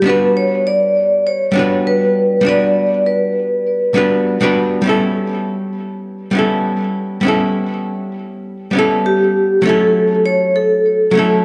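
A 4/4 groove at 100 BPM carries a light 16th-note swing, setting a sunny chillout mood in G lydian, tuned to A4 = 436 Hz. An electric hollow-body archtop guitar, miked and amplified, plays clean, picked accompaniment up front for the whole passage, its tone dark and hollow as it moves from Gmaj7 through A9/G to F#m7. A vibraphone struck with medium hard mallets carries the melody in a compact upper range, its metallic, ringing notes shimmering with fast motor vibrato and trailed by tape echo. The vibraphone steps away at 3.9 seconds, leaving the guitar alone until the melody returns at 9.1 seconds. The whole recording sits in a lush, wet hall reverb with a long 2.6-second decay, giving a dark, warm production. This is a short excerpt cut from a longer piece.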